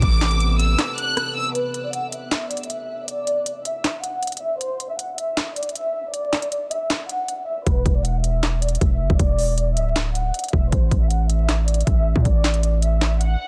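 Dark and hard-hitting, this half-time trap cut at 157 BPM is led by an up-front studio violin section playing a bowed melody with light vibrato, a soft sul tasto tone, low-pass filtering and digital delay. A deep, moody sawtooth pad with chorus and reverb holds an Amadd9 chord only until 1.5 seconds, and the punchy, heavy 808-style bass with its noise layer drops out at 0.8 seconds and returns at 7.7 seconds under Dsus2 and A5 chords. The electronic trap kit drives throughout with a hard-clipped kick, sharp snare, crisp hats, handclaps and rim clicks, all within a dense, heavily limited master that carries a layer of vinyl crackle.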